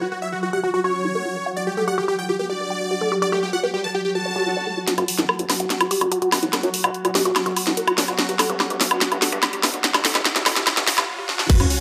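A straight 4/4 pulse drives this intense, hypnotic psychedelic trance passage, cut from a longer piece. From the start, a bubbling, resonant texture with random filter steps holds sustained chords under a filter sweep, while a woody, wave-folded pluck plays a dark, percussive riff through chorus, cassette tape coloring and digital delay, both pumping against the sidechain. Up front, a huge, dense supersaw carries the melody with phaser and dub echo until 4.8 seconds, and a wobbling formant-sweep bass adds a brief second line in the background with 12-bit grit and tape echo. A swell leads into a build-up at 4.9 seconds, where a garage drum kit with a cracking snare, warm hats, crash and woodblock runs an extended fill, joined by a fat, nasal analog bass in the background, with filter sweeps over risers and a sub drop. After a short break, a tight, layered electronic kick and the returning supersaw land on an impact at 11.5 seconds, all set in a moderate plate reverb.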